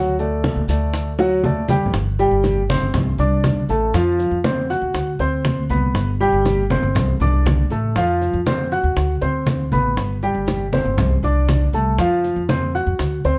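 Up-front grand piano arpeggios and a woody pizzicato upright bass open this relaxed, danceable Cuban son and guajira fragment in G major at 119 BPM, joined at 0.2 seconds by round, low-tuned bongos struck with hard hands, distant, thick-skinned congas in a large room and grainy, band-limited maracas, with a drum fill at 1.2 seconds leading into a cycle of Gsus4, Csus2, F5, D7 and G chords under light reverb in a dark, warm production.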